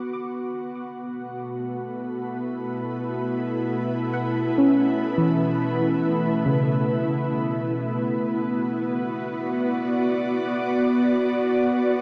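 Melancholic and spacious, this ambient excerpt in free time fades in on a mellow, detuned, airy pad with ensemble chorus holding sustained chords up front over Bm and Aadd9/B, while a soft, round, dark pluck with chorus and tape echo traces arpeggios until 10.0 s, the two set in a huge reverberant space with an 8.4-second tail.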